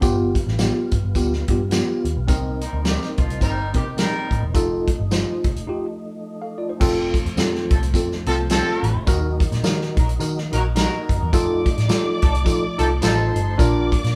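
A swung, danceable 4/4 groove drives this joyful, uptempo 1960s-style soul excerpt, anchored by an up-front, natural country drum kit with a punchy kick, a jingly background tambourine, and a round, foam-muted electric bass with a dark, amped tone. A worn, slightly out-of-tune tine electric piano accompanies mellowly while a tonewheel organ holds smooth chords in the background, colored by key click, slow rotary speaker and chorus vibrato, and a distant, roomy horn section adds a jazz-style second line from 2.6 s. After a brief break at 5.7 s, a veiled, lush string section bowed con sordino enters at 11.3 s with soft attack, as the band plays live in one room under a moderate large-studio reverb.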